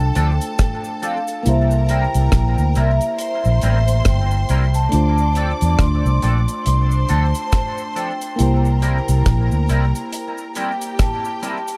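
A slow lovers rock reggae groove at 69 BPM in 4/4 swings its sixteenths, carried by a deep, dry reggae drum kit with a tight kick, hi-hat and rim click sitting up front, while a cabasa adds a small-room shake in the background. The dark, round, foam-muted fingered bass is punchy and prominent, holding the low end until it drops out at 9.9 s. Above it, a glassy FM electric piano with a bell-like attack and chorus fills in the harmony, and a clean, twangy electric guitar adds stabs coloured by analog chorus and tape echo. Soft-mallet vibraphone carries the melody with a metallic ring and slow motor vibrato, joined by a lush, bowed string section playing a smooth second line, both bathed in tape echo. The mood is smooth and bittersweet, with the harmony rocking between Dm7 and C7 in a dark, warm production, and the passage is cut from a longer piece.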